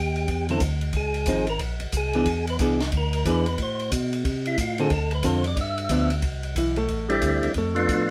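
Swinging at 182 BPM in 4/4, this greasy, bluesy soul jazz organ trio excerpt in C major features an up-front, lightly overdriven, percussive tonewheel organ soloing through chorus vibrato and a fast rotary speaker, a fat, key-clicking tonewheel organ bass with its rotor stopped, a dry compact cocktail kit with dark cymbals, a high-tuned snare and a punchy kick, and a clean, picked hollow-body electric guitar that accompanies until taking the solo at 6.2 seconds, set in a moderate club reverb.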